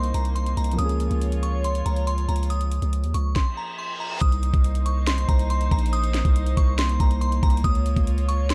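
A glassy FM synth bell with chorus and digital delay carries an eerie melody over bowed strings with a reedy, gut-string tone, a dark concert grand piano, a deep sine 808 bass and an up-front trap kit with a knocking kick, sharp snare and metallic hats, all in a hard-hitting half-time trap groove at 140 BPM in C phrygian. The piano drops out at 4.2 seconds, just after a brief stop where a downlifter and reverse cymbal fill the gap from 3.5 seconds. The bell, strings, bass and drums continue over the Cm7 and Db6 chords to the end of this excerpt from a longer piece.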